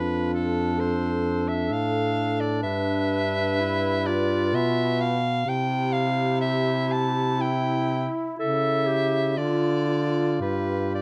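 Serene and unhurried, this 11-second excerpt from a lyrical classical piece for single-reed quartet drifts in 3/4 at a rubato 54-67 BPM in C major, tuned to A4 = 438 Hz. A bright, close-miked soprano saxophone sings the melody up front with light vibrato. Beneath it, a warm alto saxophone traces a second line with vibrato, a mellow, distant clarinet adds roomy accompaniment, and a baritone saxophone anchors the bass up front with gentle vibrato, all in a dark production with light reverb as the harmony moves from F through G and C before turning toward G7.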